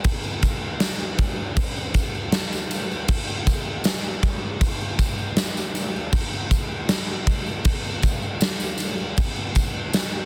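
A huge arena drum kit dominates this short rock excerpt, sitting up front with a punchy kick, a medium-tuned snare and bright crash cymbals ringing through a hall-like acoustic space. The tempo is a steady 79 BPM in straight 4/4, and despite the heavy, dense master the mood comes across as hazy and blissful. A jingly tambourine sits in the background, its small-room acoustic character adding a soft shimmer beneath the kit. Both parts play from the opening moment through to about 10 seconds, cut from a longer piece. Light reverb and a touch of studio ambience frame the sound, while heavy limiting shapes a dense, modern master.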